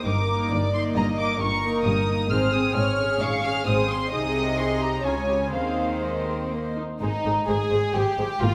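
Close and up front, a second violin section carries the inner line with a soft-attack, sul tasto sound, while the first violins float above with the melody in a pure, smooth-topped tone and the violas fill in the accompaniment. Beneath them, a rich cello section and a distant double bass section join on the bass at 0.1 seconds, the five bowed ensembles sitting in a wet scoring-stage reverb. This graceful, lively excerpt from a quick classical-period movement for string orchestra moves in 3/4 at 120-138 BPM with a rubato feel in Ab major, turning to a new section at 7.0 seconds.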